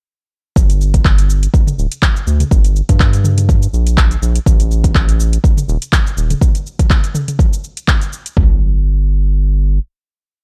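An overdriven deep house kit leads this short, spiritual and driving afro house piece in G minor at 123 BPM, its deep four-on-the-floor kick and floor tom sitting up front from 0.6 seconds, while a lighter afro-pop kit adds metallic closed hats, shaker, mid tom and a clapped backbeat with a tape-tinged edge and a gentle 16th-note swing. Beneath them a round analog bass carries a dub-style line with a fast attack and sustained notes, pumping against the kick. The drums drop away by 8.5 seconds, leaving the bass to ring out a final note until 9.8 seconds in a dry, dark production.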